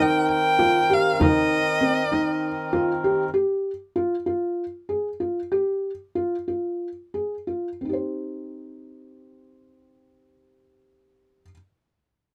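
Contemporary chamber music in 7/8, pensive yet urgent, in which a vibrato-laden, slightly nasal violin melody, reedy, breathing harmonium chords and a deep frame drum played with soft hands share the opening moments with a thick-felted, mellow upright piano, whose arpeggios, complete with audible action noise, carry on alone from about 3.3 seconds as the pace slows, all heard up close with light reverb in this fragment of a longer piece.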